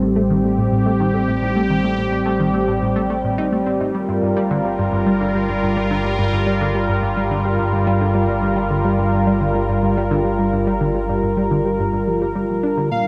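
Soaked in a huge, dreamy reverb with a cassette-tape haze, this excerpt of mysterious, hypnotic, sequencer-driven space music at 107 BPM in G minor sets a bright, airy, chorused sawtooth pad over a tight, nasal sequenced riff run through analog delay and a fat analog bass, moving from Am7b5 to Gm7 at 3.9 s before a shimmering pulse-width lead with vibrato sounds a single F5 at 12.9 s.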